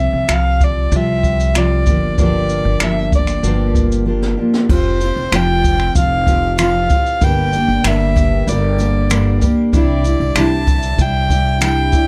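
Acoustic pop at 95 BPM in a straight 4/4, this short excerpt from a longer piece feels tender and reflective, its production dark and warm with little reverb. A fingerpicked, double-tracked steel-string acoustic guitar sits up front with a full-bodied dreadnought tone, while a single violin carries the melody between C5 and A5, bowed sul tasto with light vibrato, a soft attack and an airy, intimate quality. Underneath, a pizzicato upright bass with gut strings gives a woody, thumpy low end, and a brushed jazz kit sounds distant and roomy, with dark cymbals, a high-tuned snare, a boomy kick, finger snaps and shaker. A drum fill at 4.1 seconds leads into a new section at 4.7 seconds, where a very quiet, jingly tambourine joins. The harmony drifts from Csus4 and Gm7 through Fsus2 and Gm before settling on Cadd9.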